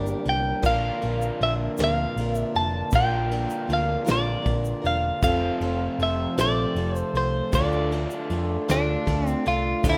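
Folk rock with a heartland rock lean, this reflective, dusty excerpt moves at a slow 52 BPM in 6/8 with a straight feel, set in D minor and cut from a longer piece. Up front, a clean, compressed twelve-string electric guitar carries the melody with a spring reverb halo, while a round, amped hollow-body short-scale bass anchors the low end. A crunchy, bright overdriven guitar, double-tracked, plays a riff beneath, and a boxy plugged-in steel-string acoustic guitar picks an accompaniment in the background, finger squeaks audible. A reedy, breathing pedal harmonium holds mellow sustained chords, and a barky electric piano sits very quietly, heard through its built-in speakers after entering at 0.6 seconds. A soft brush kit with dark cymbals, a medium-tuned snare and a punchy kick joins at 0.3 seconds, and a grainy tube shaker sits close and dry at the back. The harmony moves from Gm through Bb and F to Dm in a rough home demo mix with moderate studio ambience.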